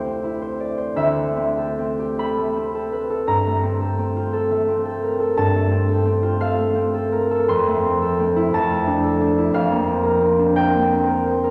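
A ringing, thumb-plucked concert harp sits up front in this dreamy, serene classical solo excerpt, drifting with rubato in 6/8 at 48-60 BPM across a range from D2 to C6 through lush chords such as Dm11, Gm11 and Fmaj7, all bathed in a wet concert hall reverb with a 2.1-second decay.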